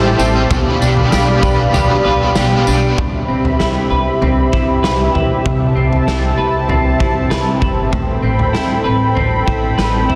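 Dreamy and ethereal, this straight-feel dream pop fragment from a longer piece rests on a smooth, warbling analog pad with detuned sawtooth chords, while a clean semi-hollow electric guitar picks arpeggios through lush chorus and tape echo over a woody pizzicato upright bass. A bright, overdriven garage guitar with tremolo and chorus adds accompaniment only until 3.0 s, as a gritty, saturated drum kit of kick, snare, tambourine and toms enters at 0.2 s and the harmony moves from Am7 and G7/B to Am9. Between 2.4 and 3.4 s a very quiet, bell-like celesta adds a delicate, airy touch, all set in light reverb and small-room ambience within a dense, heavily limited master.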